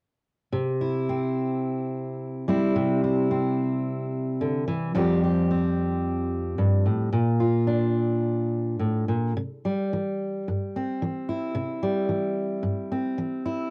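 Folk fingerstyle in C mixolydian with a nostalgic mood, this rubato excerpt around 110 BPM features a solo fingerpicked steel-string dreadnought guitar, dark, full-bodied and up front with audible finger squeak and cassette tape coloring, moving from C through Fadd9 and Bb before returning to C at 9.4 seconds inside a wet booth ambience of a home cassette recording.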